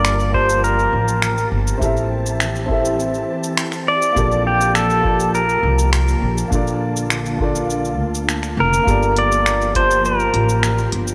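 A smooth sunset chillout groove in G dorian opens at once with a bright, twangy pedal steel guitar carrying the melody up front, played with fingerpicks and slide, its compressed, clean tone shaped by volume swells, digital delay and shimmer reverb. Beneath it, a dark, intimate baby grand piano adds mellow accompaniment with audible action noise, while a soft string machine holds silky, warbling chords with a slow attack and long release, thickened by ensemble chorus. A woody, growly upright bass plays pizzicato close to the listener, and a deep house drum kit lays down cabasa, finger snaps and smooth hats in a small room ambience. An overdriven electronic kick drum, deep and analog in character, joins at 0.3 seconds and drops out at 9.9 seconds. At a straight 102 BPM in 4/4, the harmony moves through Gm9, Am7, Gm9/Bb and Bbmaj7 before returning to Gm9. The whole sits in a lush hall reverb with a rough home-demo mix, giving this short cut from a longer piece a warm glow.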